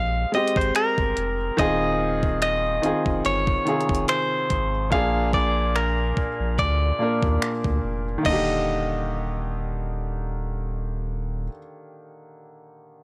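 A slow 72 BPM groove in 4/4 with a light swing on the sixteenths sets up this dreamy, smooth contemporary R&B excerpt in Eb major, cut from a longer piece. A crisp, sampler-style 8-bit drum machine with a thumpy kick, finger snaps, hi-hat and crash cymbal runs from 0.3 to 8.5 seconds, its sound carrying the character of a small room it was re-recorded in. Beneath it, a thick, triangle-toned sub bass with a fast attack and long sustain holds the low end, while an intimate baby grand piano, its action noise audible, plays accompaniment through the chords Abmaj7, Dbmaj7/Eb and Bb7 before settling on Ebmaj7. Up front, a bright, twangy, scooped clean electric guitar, picked and compressed, carries the melody with an analog delay until 11.5 seconds. The piano plays on alone until 13.0 seconds, and the whole track has a dry, gritty hardware sound.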